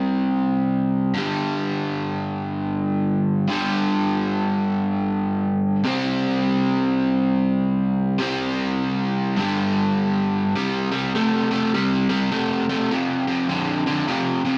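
Rock with a driving, swaggering swing feel, this fragment of a longer piece features a lone overdriven electric guitar, bright, picked and double-tracked up front, playing C5 and G5 power chords before moving into a new section at 10.6 seconds that turns to F5, all captured in a dry, close 1970s-style studio sound with light reverb.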